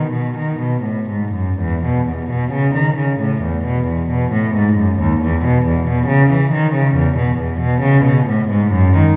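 Classical music in a baroque-style suite movement for unaccompanied cello, this short excerpt is cut from a longer piece and moves with a dance-like, flowing mood. The tempo sits around 60-69 BPM in 4/4, played with a rubato feel in E major, tuned to A4 = 439 Hz. A single bowed cello carries the whole 9.2 seconds alone, staying low in its range from D#2 to E3. Its gut-string tone is rich and reedy, in a period style, and it sits close and up front. Around it, a recital-hall reverb of about 1.5 seconds lends the sound of a church or concert hall.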